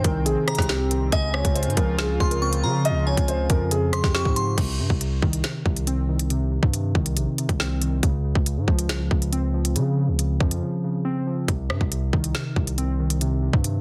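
Dark and menacing, this half-time drill excerpt at 139 BPM in C phrygian opens with a boxy, intimate concert grand piano carrying the melody through a low-pass filter and delay, shadowed by a crystalline FM synth bell with phaser and a soft, detuned analog pad in the background, all three falling away at about 4.6 seconds. Warbling, nostalgic lo-fi synth keys with chorus and a deep, sine-toned 808 bass continue throughout over Cm and Dbmaj7 chords. An up-front electronic drill kit with a hard-clipped kick, woody snare, crisp hats, rim clicks and crash drives the dense, heavily limited mix, which reaches a break from 10.6 to 11.5 seconds.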